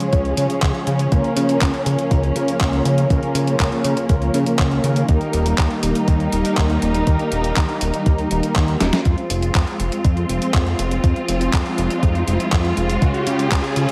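A straight pulse from a thumpy electronic kick and an overdriven, gated-reverb drum machine of handclaps, hi-hat and snare drives this bittersweet, nostalgic italo disco fragment, where a fat, detuned analog bass and dark, chorused synth brass stabs sit under lush bowed string chords with a gritty 12-bit edge, until a drum fill at 8.8 seconds opens onto a filter sweep across the strings from 9.1 seconds and a background riser rising in at 11.2 seconds.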